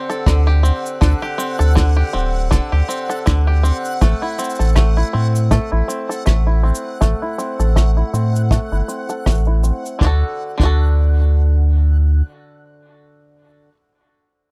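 A twangy, fingerpicked bluegrass banjo and a faint, reversed, dreamy granular texture open this delicate, hopeful folktronica fragment together at 80 BPM in D mixolydian with a swung 16th feel, the banjo's arpeggios running through a filter sweep and tape echo over D7sus4 and Am chords while the texture hangs bright and detuned above; a brushed cabasa and rim click and a tight acoustic kick set a small-room pulse, and a deep, round sine sub bass sits up front. The texture and cabasa drop out at 10.0 s and the kick at 10.8 s as the harmony settles on D, and the banjo rings on alone after the bass stops at 12.2 s, all in a dry, close 1970s-style studio sound.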